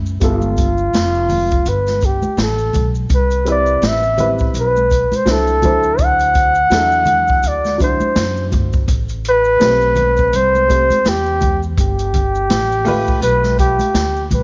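An upright bass opens this short cut from a longer jazz-hop piece, its pizzicato steel strings sounding woody and thumpy, joined almost at once by maracas and congas and then, at 0.2 seconds, by the rest of the band. The tempo sits at a relaxed 83 BPM in 4/4 with a gentle swing on the sixteenths, and the mood is smoky and mellow. Up front, a breathy flugelhorn carries the solo melody in a jazz style, with light vibrato and scooped notes. Beneath it, a dark, worn upright piano accompanies with a boxy, slightly detuned tone, short sustain and audible action noise, moving through G9, Cmaj7, D9 and Am9 before returning to G9; the piano drops out at 13.9 seconds. An open acoustic jazz kit of hi-hat, medium-tuned snare and boomy kick sounds natural in its studio room, while the ringing hand percussion stays close and dry in the background. Light reverb and a soft, dulled top end, with the band tuned slightly low at A4 = 437 Hz, lend the whole a gentle haze.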